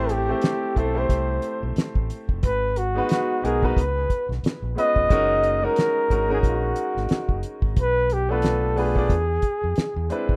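Cinematic and bittersweet, this lush 1970s-style soul excerpt swings gently in 4/4 as a breathy, whispered flugelhorn carries the melody with vibrato, scooped notes and tape echo over clear grand piano chords, an overdriven, punchy fingered electric bass and a cloth-damped, thuddy drum kit with a fat snare and tight kick, set in moderate studio reverb with the rough feel of a home demo.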